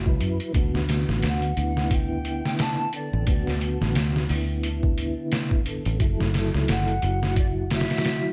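Trip hop at 88 BPM with a swung 4/4 feel, this brooding, cinematic fragment moves from F#7(no3) to D6 and settles on F#m7 at 6.0 seconds. A compressed, pitched-down sampler-style drum kit sits up front with a thumpy kick, medium-tuned snare and hi-hat, alongside a punchy, foam-muted fingered electric bass and a soft, percussive tonewheel organ coloured by chorus vibrato, slow rotary speaker, tremolo and tape echo. At 1.3 seconds a distant, hollow concert flute enters with the melody, its pure tone roughened by 12-bit sampler grit and tape echo, all within a dark, dry production.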